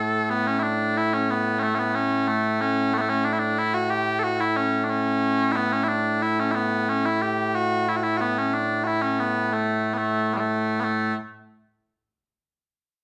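Mellow small bagpipes play alone and up front from 0.0 to 11.2 s with a sweet, continuous, vibrato-tinged tone in a proud, stirring Scottish traditional tune in 2/4, moving into a new section at 10.9 s in this fragment of a longer piece, heard as a live performance in one room filled out by a large studio reverb.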